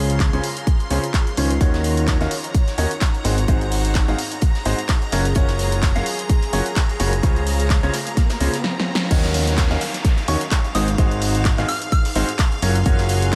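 A fat, thick analog bass sits up front in this joyful, feel-good piano house excerpt at 128 BPM in Db major, pumping against a punchy, layered electronic kick that drives a swung 4/4 groove. A bright baby grand piano plays the riff with audible action noise and long sustain, filtered and tape-echoed as it breathes with the sidechain, while a shimmering string machine holds violin chords and a cloudy granular pad drifts in the background. A punchy analog drum machine adds crash, handclaps, hi-hat and snare with a short room sound, joined from 1.6 s by a very quiet brushed kit with a rolled-off top. The chords cycle through Dbmaj7, Ebm7, Ab7 and Gbmaj7, and a riser and downlifter sounds through the drum fill and band accent and on into the drop at 9.1 s. In the drop, a soft, pure FM bell melody with chorus, phaser and tape echo floats briefly in the background, all set in light digital ambience.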